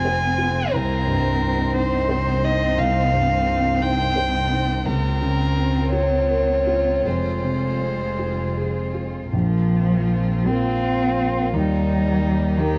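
Heard through worn, warbling cassette tape with light reverb, this melancholic, reflective fragment of neoclassical piano and strings drifts in a rubato 6/8 at 51-60 BPM in Bb dorian, where a dark, distant sul tasto violin carries the melody up front with tape echo over a nasal, woody cello second line, a felt-muted upright piano's mellow, intimate accompaniment, a warm chamber string section holding sustained chords in the background and a pure, floating bowed double bass, the harmony moving from Fm toward Bbsus2 and Eb once the second section begins at 9.3 seconds.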